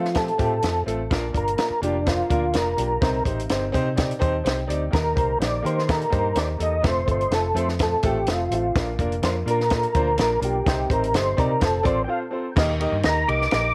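A straight 4/4 groove at 126 BPM drives this uptempo, danceable 1960s-style soul excerpt in Bb major, cut from a longer piece. A compact cocktail drum kit sits up front with a dry, natural sound, its tight kick, high-tuned snare, hi-hat and dark ride and crash cymbals keeping the pulse, while a vintage muted fingered electric bass adds a round, punchy, foam-muted tone from F1 to F3. A tonewheel organ carries the melody as a solo from the start until 12.6 seconds, its clean tone colored by chorus vibrato, a stopped rotary speaker and tape echo, ranging from D4 to D6. A clear concert grand piano with deep bass accompanies up front and steps out for a fill between 4.0 and 4.9 seconds. The harmony moves through F, Bb, Cm and Eb, and a brief break at 12.1 seconds leads into a new section on Eb, all set in a small room with light reverb.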